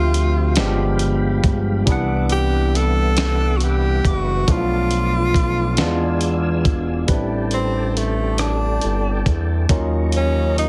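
A breathy tenor saxophone with vibrato and scooped notes leads this yearning, late-night slow R&B cut in 6/8 at 46 BPM, moving into a jazz-style solo at 7.1 seconds, bathed in plate reverb and delay. Beneath it, a barky tine electric piano played through a combo amp and a clear tonewheel organ with chorus vibrato and slow rotary speaker carry lush chords such as Dm11, Cmaj9#11 and E7b9. An up-front, warm detuned synth bass and a gritty sampler-style drum kit with a thumpy kick, fat snare, rim clicks and hi-hat, entering at 0.1 seconds, sit inside a heavily compressed, radio-like mix.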